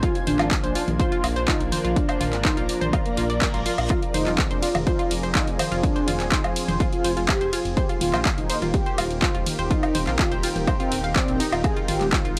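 A dry, gritty recording with light digital ambience carries this driving, melancholic melodic techno excerpt, where an overdriven electronic kick and a techno drum kit of handclaps, hi-hat, ride cymbal, toms and woodblock sit up front with studio reverb. A dark detuned saw bass rumbles in at 0.3 seconds beneath a brassy, evolving synth brass melody and a round analog pluck spinning arpeggios, both treated with chorus and analog delay. Behind them, a lush unison pad holds sustained chords over Bb, Fm, Eb and Ab while a cloudy granular pad blurs the background, all of these synths pumping with sidechain, and a reverse cymbal sounds from 3.3 to 3.9 seconds.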